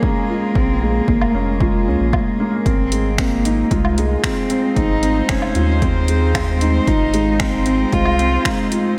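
Intimate and moving, this short piano-and-strings electronica cut moves at 114 BPM in a straight 4/4, shifting from Bbm7 to Ab6 at 2.7 seconds. A dark, woody cello carries the melody with close vibrato and a touch of delay, while a string quartet, played one player per line and sul tasto, holds soft, floating chords alongside it. A felt-muted upright piano plays a mellow riff with audible action noise, its tone thickened by lush chorus and delay. A punchy, overdriven electronic kick drives the groove in a small room, joined at 0.6 seconds by a round, deep analog bass that pumps against it. From 1.2 seconds a deep house kit adds finger snaps, hi-hat and woodblock, and the whole piece sits in a dreamy mix soaked in hall reverb.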